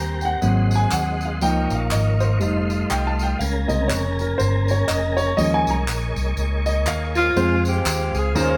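Uptempo gospel at 121 BPM with a lightly swung 4/4 feel and an uplifting, soulful mood, led by an intimate grand piano solo with audible action noise through chords such as Db69, Bbm9 and Eb7sus4, over smooth tonewheel organ chords turning through a slow rotary speaker, an amped, up-front fingered electric bass, and close egg shaker, tambourine and group handclaps, with the band heard live in a moderately reverberant stone room; a warm saxophone section with light vibrato enters at 7.2 seconds, just before the harmony lands on Fm.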